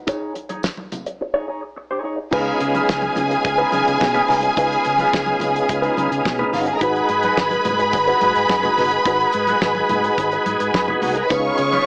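A small-speaker sound with faint mains hum, light reverb and studio ambience frames this driving, danceable disco excerpt at 107 BPM in straight 4/4. Over a D#7sus4 chord, a dark, compressed wah guitar plays with a damped 70s kit (tight kick, fat snare, dark cymbals), bright, thin-skinned congas in the background and a very quiet, jingly tambourine. At 2.3 s the harmony moves to C#9, then to G#m7 at 6.8 s. At 2.3 s a lush, bowed symphonic string section also comes up front with expressive vibrato, joined by smooth tonewheel organ chords with chorus vibrato and slow rotary speaker, and a bright, amped fingered bass through an envelope filter.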